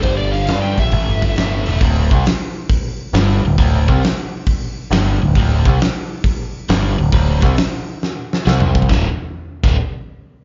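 An overdriven slide guitar opens this brooding, heavy cut from a longer blues rock and southern rock power-trio performance, singing a brief fingered melody through plate reverb, slapback echo and digital delay before it stops at 1.8 seconds. Beneath it, a biting, double-tracked electric guitar plays a low picked riff with its own slapback echo, while a growling picked bass, overdriven and up front, anchors the bottom end. The big acoustic drum kit sounds smooth and dark in a large room, its fat snare, punchy kick, crash, hi-hat and toms pushing a swung groove. A drum fill from 8.0 to 8.9 seconds leads into the closing passage. The performance comes across as a live club gig heard through the venue's PA, with club reverb and a muffled top end.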